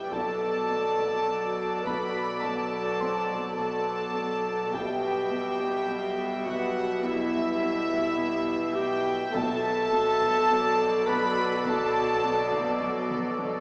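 A slow, straight 52 BPM pulse in 4/4 carries this eerie, ominous suspense cue cut from a longer film score, where floating sul tasto violin sections play the melody and a higher up-front second line beside a dark classical clarinet, lush woody violas with vibrato, rich cellos and double basses in the background, a deep rumbling drone, a clear, present piano texture that stops at 9.4 s, a very quiet intimate cello riff, distant hard-stick taiko and barely audible round timpani, with a drum fill at 12.8 s, moving between D/B and Em/B chords in a reverberant hall with a small-speaker sound.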